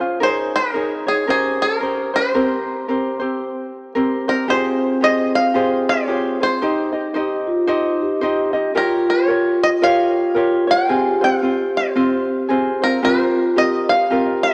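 A light, fingerpicked ukulele opens this dreamy, relaxed Hawaiian piece, and at 0.2 seconds a bright, twangy bluegrass banjo joins with the melody, played with fingerpicks and sitting up front alongside the ukulele. The groove is swung in an easy four, and the chords drift through lush suspended and extended colours before settling into a minor mood. At 4.5 seconds a vibraphone struck with soft mallets, motor off, slips in beneath them as a second line, its metallic ring mellow, dark and smooth in a narrow register just above middle C. The banjo's percussive attack contrasts with the ukulele's gentle, warm fingerpicked tone and the vibraphone's ringing sound. All three parts carry a cassette-tape character, and the whole home recording is bathed in a wet, lush hall reverb that deepens its drowsy atmosphere. The passage is cut from a longer piece.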